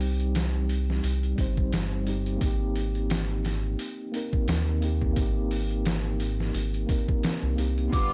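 Trip hop with a brooding, melancholic air, built on a mellow tine electric piano treated with tremolo, tape echo and a low-pass filter sweep over a Cm to Abmaj7 change, a deep, round analog bass and a gritty, pitched-down sampler-style drum kit with a thumpy kick, all set in a dry, crackling vinyl-tinged recording, until a pure, woody baroque flute and a distant, lush string section enter together at 7.9 s just as the cut-off fragment ends at 8.1 s.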